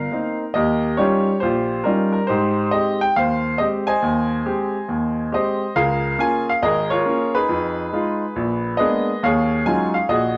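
Solo jazz in a relaxed, playful mood, swinging at 138 BPM in 4/4, with a clear baby grand piano carrying the whole fragment from Ab major into Db major at 5.8 seconds. The piano sits up front with long sustain across a range from Ab1 to Ab5, voicing rich chords like Abmaj7, Db6 and Bb7b9 before settling on Ebm11. A moderate studio reverb gives the sense of hearing it from further back in the room.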